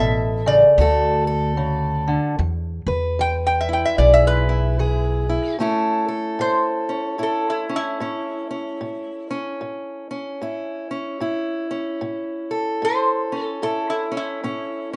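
A metallic, nasal resonator slide guitar takes the lead over a dark, boxy fingerpicked parlour acoustic and a woody, thumpy pizzicato upright bass, opening a swaggering, laid-back acoustic country blues in A major at a relaxed, swung 75 BPM as the chords move from A to D to E. The bass drops out at 5.4 seconds, leaving the two up-front guitars, both touched with plate reverb, to carry on through the second section from 5.6 seconds. The moderate room sound and rough home-demo mix give this short cut from a longer piece a loose, intimate feel.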